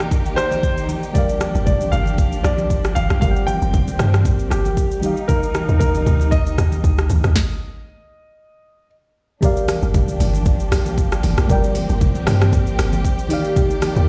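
Heard through a big sound system in a bare stone room, this soulful, relaxed amapiano excerpt moves at 116 BPM with lightly swung sixteenths, drifting between Ebmaj7 and Gm7. A dark concert grand piano carries the melody through tape echo until 8.9 s, over a mellow FM electric piano with chorus and phaser, and lush, woody studio strings with vibrato, pumping under sidechain. An up-front electronic kit with deep kick, sharp snare and metallic hats drives the groove alongside low-tuned, thick-skinned congas in the background, while a round, percussive log drum bass enters at 1.6 s; a stop at 7.4 s then gives way to the drop at 9.4 s.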